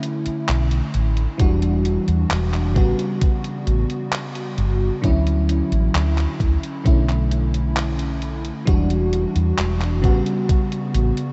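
A lush FM electric piano with a soft pad layer opens this dreamy, nostalgic vaporwave fragment at a slow 66 BPM. Its chorus-tinged, decaying chords drift through Bm11, Em9, A13 and Dmaj9 in a diffuse ambient delay, over a detuned 8-bit drum machine of handclaps and hi-hat set low in a small room. A dark, woody fretless bass enters at 0.3 seconds, round and punchy up front with tube saturation and ensemble chorus, and a thumpy, tape-warm electronic kick joins at 1.4 seconds, all under light reverb with a softened, rolled-off top end.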